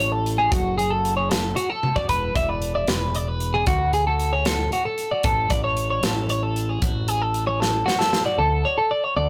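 A bright, clean twelve-string electric guitar rings out delayed arpeggios over a growling, overdriven fingered bass and an airy, polished drum kit in this wistful math rock and midwest emo excerpt in 6/8 at 76 BPM in A major, moving through A, F#m, E7(no3) and D with drum fills at 1.8 and 7.6 seconds before the drums drop out at 8.2 seconds, all captured with a rough rehearsal-room feel, tube saturation and a small room reverb.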